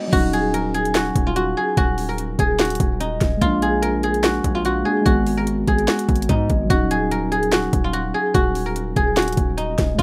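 Trap hip hop in Eb minor at 146 BPM with a half-time feel, hard-hitting and brooding, where a bright, silvery guzheng played with fingerpicks carries an up-front melody through a low-pass filter over a mellow, low-passed tine electric piano moving through Ebm7, Bb7 and Abm7, while a heavy, saturated distorted 808-style bass with a noise layer and an overdriven electronic trap kit of knocking kick, sharp snare, handclaps, bright hats and crash enter at 0.1 seconds, all in a dry, rough home-demo mix cut from a longer piece.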